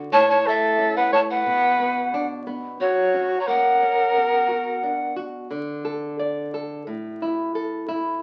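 Melancholic and earthy, this short Andean folk fragment at 89 BPM in 2/4 pairs a clear soprano saxophone melody, sung with vibrato and a soft classical attack, against an airy, bright pan flute line with a crisp chiff, both up front until 5.2 seconds over a small, fingerpicked nylon-string guitar that carries on alone to 8.2 seconds through chords from A and Bm to F# and D5, all heard through a small wet room and the crackle of a very old 78 rpm record.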